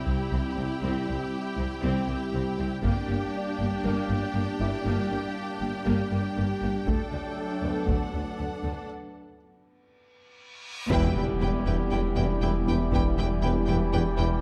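Lush bowed strings open this cinematic hybrid score, with a distant, vibrato-laden violin section on a second line over close, expressive violas gliding through portamento, while a hollow, flute-like pad with chorus holds sustained chords and a felt-muted upright piano adds an intimate texture, its action noise faintly audible. In E minor at 119 BPM in a straight 4/4, the mood is vast and relentless, as cellos and a rich double bass section sit in the background from 0.1 seconds, moving through C, G minor and D. Close, heavy-stick taiko drums strike briefly at 2.8 seconds and return at 6.9 seconds, driving on through a break and a fill before a huge, dark reverse cymbal rises into an impact. At 10.9 seconds the music lands on E minor with a full band accent: an intense chamber violin section takes the melody on a high G, tight vintage-toned trombones and shadowy, roomy French horns hold sustained chords, and a mellow tuba and a round sine sub bass anchor the low E. 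The production is dark and warm, set in a moderate scoring-stage reverb, and the passage is cut from a longer piece.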